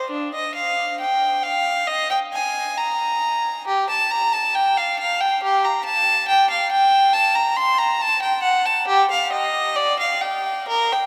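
A lone bowed violin opens this grave, solemn excerpt from a baroque-style classical suite movement. Played at a rubato 68 BPM in 4/4 and settling into G minor from 3.7 s, it sits up front with a reedy, gut-string period tone and light vibrato, tuned to A4 = 439 Hz. The single player ranges from D4 to C6 through 11.1 s, set within a vast, echoing cathedral space whose long reverb lingers around every note.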